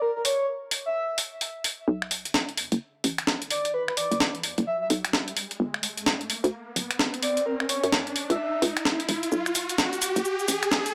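A breathy, flute-like synth lead with subtle chorus and tape echo opens this soulful, skippy two-step UK garage cut in B minor at 129 BPM, joined almost at once by a compressed, gritty sampler-style breakbeat kit of finger snaps, hi-hat, shaker and a high-tuned snare. At 1.9 seconds a hollow, punchy, bouncy FM bass enters to launch a build-up over B5, G5 and F#7 chords, with an electronic riser coming in at 4.0 seconds, all captured in a dry hardware recording with light reverb.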